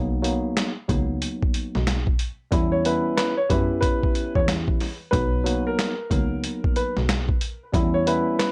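Nostalgic and warm, this boom-bap hip-hop excerpt in B major rides a swung 92 BPM groove, moving between Bmaj7 and Em6. A worn, slightly out-of-tune tine electric piano and a clear, bowed double bass with light vibrato open the cut, joined at 0.2 seconds by a gritty, pitched-down sampler drum kit with a thumpy kick, snare, hi-hat and handclaps, tape-tinged and up front. At 2.7 seconds a woody, intimate upright piano enters with a smooth melody carrying tape echo and audible action noise, and the mix sits in light reverb.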